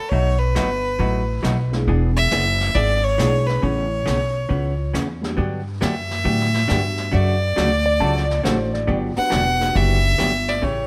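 Cheerful and swinging, this short cut from a longer western swing number moves at 137 BPM in 4/4 with a lilting eighth-note swing. A clear, focused fiddle carries the melody up front from the start, bowed by one player with light vibrato. Underneath, a dark, clean hollow-body jazz guitar is picked in a compressed accompaniment, while a woody upright bass with gut strings is plucked, thumpy and up front. A vintage brush kit sits distant and roomy in a small space, its brushed snare, hi-hat and punchy kick softened by a rolled-off top. From 1.7 seconds a mellow, boxy upright piano, slightly detuned, adds accompaniment in the background. At 7.9 seconds a clean lap steel guitar briefly slides in with a second line shaped by volume swells, over Dmaj7 moving to Gmaj7, after a progression that runs from B7 and E7 through Aadd9 and Gmaj7, all under light reverb.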